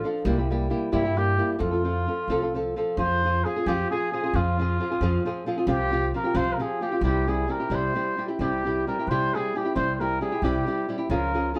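Set in 6/8 at 89 beats per minute counted in dotted quarters, this short mariachi-style folk piece moves with a free, rubato feel in F harmonic minor, and it is cut from a longer performance. The mood is festive and proud, carried by a mellow trumpet that plays the melody in a classical solo style, sitting up front yet sounding distant and roomy. A small, dark nylon-string guitar with old strings is fingerpicked as accompaniment, its woody tone placed up front. Beneath them, an upright bass with gut strings is plucked, giving a thumpy, warm low end from 0.2 seconds. The harmony passes from C7 to F before settling on F minor at 3.0 seconds, where a longer second section begins, moving through Csus4 and C and closing on a D-flat chord at 11.1 seconds. The trio plays live together in one studio room with a moderate reverb that lends a natural sense of space.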